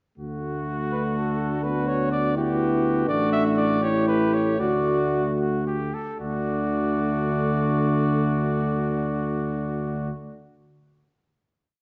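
Noble and triumphant, this brief classical brass quintet piece in D major moves in a rubato 6/8 at 74-84 BPM, opening at 0.2 s with the bright, lightly vibrato-touched trumpet playing chords in the rhythm of the tune and answering at phrase ends, the distant, roomy euphonium in the background, and the up-front, smooth-topped tuba holding sustained bass, before the warm cornet melody and the soft-attacked, vibrato-laden French horn counter-melody join at 0.9 s, slowing from 2.4 s into a final chord at 6.2 s within a dark, reverberant recital hall.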